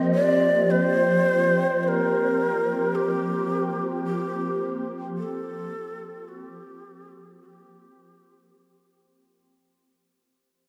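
Peaceful and warm, this ambient fragment is cut from a longer piece and fades out across its 9.6 seconds. A dark, shimmering pad with granular, chorus and phaser colouring holds a sustained Fsus4 chord up front. A breathy, mellow shakuhachi sings a tongued melody with vibrato through a diffuse delay, all set in a vast, echoing space with a very long reverb tail.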